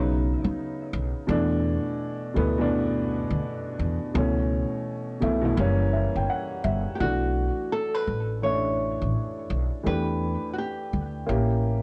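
A dark, mellow upright piano accompanies this reflective, hazy lo-fi hip hop excerpt with a gentle swing, its woody, vintage tone sitting up front and stepping out with a fill from 5.6 to 7.0 seconds. Beneath it, a growly, thumpy pizzicato upright bass with tube saturation anchors the changes. A small, fingerpicked nylon-string guitar, filtered and trailed by tape echo, offers a brief melodic touch at the start before returning at 7.0 seconds, all wrapped in light reverb and the warbly pitch drift of worn cassette tape.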